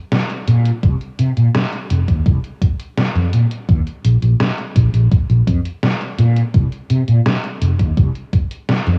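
A detuned 8-bit digital drum machine opens this nostalgic, dreamy vaporwave piece at 0.1 seconds, its hi-hat and fat snare sounding sampler-style and tape-warm, re-recorded in a small room and placed up front. A fretless electric bass enters at 0.5 seconds, spanning F1 to C3 with a warm, amped, growly, punchy tone thickened by ensemble chorus, and it sits up front as the loudest voice. At 0.8 seconds an electronic kick drum joins with a thumpy, sampler-style hit that also carries a tape-warm, small-room character. The straight 4/4 groove holds a single section through this short cut from a longer piece. Light reverb, cassette tape colour and small room ambience give the recording its hazy, faded-memory feel.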